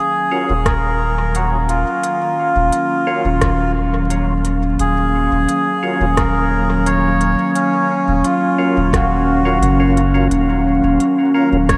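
Ambient dub at 87 BPM in Eb minor, deep and meditative, cut from a longer piece and resting on a single Ebm9 chord: a reedy, breathy melodica carries the melody with dub echo over a warbling, nostalgic tape-like pad, while a gritty overdriven tonewheel organ with chorus vibrato adds percussive stabs from 0.3 seconds, a round, soft sub bass sits up front from 0.5 seconds, and from 0.7 seconds a background electronic kick joins an organic electronic kit of crisp hi-hats and rim clicks, the whole mix soaked in huge, dreamy reverb and vinyl crackle.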